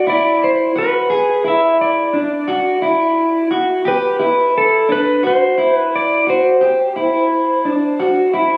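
From the first second a dark, clean lap steel guitar sings a floating dream pop melody with slide and volume swells through tape echo, over the slightly broken-up arpeggios of an electric guitar soaked in lush chorus, both up front at 87 BPM as the harmony drifts from D9 to E7 to D13, all in a dreamy, roomy sound caught on a phone in a club with a moderate plate reverb.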